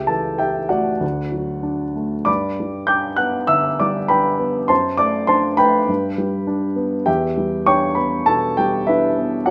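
Brooding and bittersweet, this short passage cut from a longer romantic character piece sets a dark, woody upright piano alone up front, moving at 100 BPM in 4/4 with a free, rubato feel. Spanning C#2 to G6 under light reverb, its mellow tone carries a harmony that opens on A7/C# and settles through D and G before D7/F# arrives at 4.7 seconds and the close lands on Em7 at 7.1 seconds.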